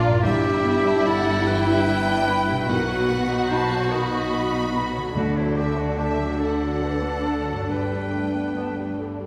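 Heard from further back in a reverberant scoring stage, this hopeful, uplifting orchestral film cue unfolds in an uneven, rubato 6/8. A lush, distant violin section carries the melody, while a clear oboe, a quiet clarinet, a second, focused violin section and an airy flute group weave supporting lines around it. Beneath them, a soft felt-muted upright piano, a background viola section, mellow French horns holding chords, a ringing concert harp in arpeggios and rich cello and double bass sections fill out the harmony, with close, dry timpani touches at 0.2 and 5.2 seconds before the excerpt settles on a final chord at 7.7 seconds.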